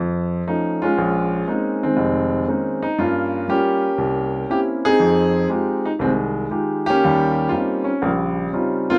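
Playful and swinging, this short solo jazz passage moves at 119 BPM in 4/4, with a strong swing on the eighth notes. A baby grand piano carries the whole piece alone from 0.0 to 9.0 seconds, its tone warm and up front, with long sustain. The playing spans a deep low end up through the middle of the keyboard. The harmony is rich and chromatic, opening on an altered F7 before moving through Bbm11, Gm7b5, C7b9 and Fm9, then settling on Eb13. Light reverb gives the piano a touch of room, and the clip is cut from a longer performance.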